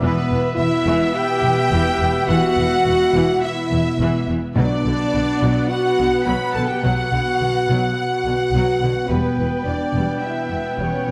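Dramatic and epic, this cinematic orchestral film-score excerpt moves at a straight 106 BPM in 4/4, shifting from E minor to B minor and back to E minor. A lush, vibrato-rich studio violin section carries the melody, shadowed in the background by a second, focused symphonic violin line, while a smooth viola section fills out the accompaniment. The clear, punchy French horn section sits most prominently, holding sustained chords over a dark trombone section lower in the mix, and a solo trumpet adds clear stabs with a smooth top. Smooth, even cellos and woody double basses anchor the bass with bowed tone, and a close timpani hit on B sounds briefly at 4.6 seconds. A wet scoring stage reverb with a 1.8-second tail gives the whole a dark, warm production.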